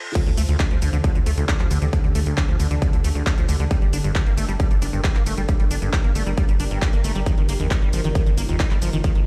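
A shimmering, ethereal pad opens this euphoric yet bittersweet uplifting trance excerpt at 135 BPM. At 0.2 seconds an up-front, overdriven electronic kick arrives together with a dry analog drum machine playing crash, handclaps, hi-hat and shaker, and a tight sawtooth sequencer bass follows at 0.3 seconds, pumping underneath. A squelchy, resonant liquid acid bass spins arpeggios through a filter sweep, dub echo and tape colour, while the pad holds evolving chords treated with chorus and phaser. The chords move from Dsus4 to Gmadd9 at 3.7 seconds and Ebadd9/G at 7.3 seconds, all heard as if through a big sound system in a bare stone room.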